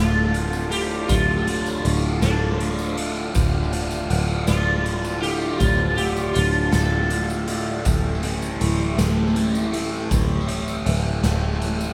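A slow 6/8 sway at 53 BPM in D minor carries this dark, mysterious psychedelic rock fragment, with a gritty, saturated garage drum kit of punchy kick, medium-tuned snare and hi-hat in a pumping stone room entering at 0.3 seconds, a close, jingly tambourine sitting in the background from 0.5 seconds, and a round, foam-muted picked bass holding a low D up front. A double-tracked fuzz guitar with phaser and tape echo plays the riff over vintage, overdriven combo organ chords steeped in heavy vibrato, while a buzzing, shimmering sitar with ringing sympathetic strings and echo carries the melody until 7.5 seconds. The harmony rests on Dm before moving to Am7/D, set within an echo-heavy mix and light reverb.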